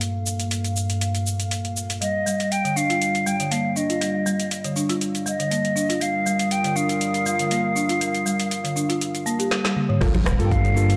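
Opening on a dark analog pad holding sustained chords under an up-front afro-pop drum kit, this driving afro house excerpt in G minor moves at 120 BPM in a straight 4/4, the pad pumping with sidechain and thickened by chorus while the kit brings a woody snare, metallic hats, cabasa, rim click, toms and crash with a tape-tinged studio ambience. At 2.0 seconds a hollow, pure concert flute enters with a vibrato-touched melody carried on delay, alongside a folk marimba played with soft mallets whose round, rustic arpeggios also pump and echo. The harmony moves from Gm9 to Ebmaj7, then F9sus4, with a drum fill arriving just before the return to Gm9 at 10.0 seconds. There an impact lands in the background alongside a deep, nasal chord stab, a smooth gliding synth bass with portamento, a layered electronic kick and a brief burst of bright, hard-hand congas. A lush hall reverb gives the whole mix a moody, spacious glow.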